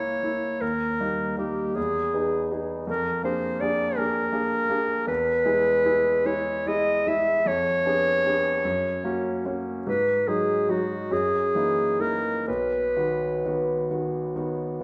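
Set in a wet recital hall with a 1.4-second reverb tail, this solemn, yearning romantic duo in a rubato 6/8 at 40-56 BPM (dotted quarters) features a warm, up-front solo clarinet singing the melody between F#4 and E5 until 13.9 s, over a clear concert grand piano with deep bass whose accompaniment, also up front, spans B1 to G#4, settles into B major from 5.1 s, and continues alone until 14.8 s, all tuned to A4 = 436 Hz in this short passage cut from a longer piece.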